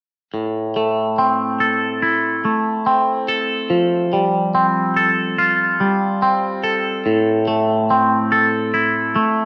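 Melancholic and cinematic, this short rock fragment, cut from a longer piece, moves at a slow, straight four-beat pulse. A single twangy electric guitar carries everything, playing clean, fingered arpeggios that sit up front from 0.3 to 9.5 seconds. Its tone is warm and twangy, colored by a phaser and a slapback echo that give each note a quick doubled edge. The harmony drifts from A minor to F add9 and back to A minor, lending the passage a wistful cast. A wet spring reverb surrounds the guitar with a digital ambience, casting a 1.4-second tail that deepens the filmic atmosphere.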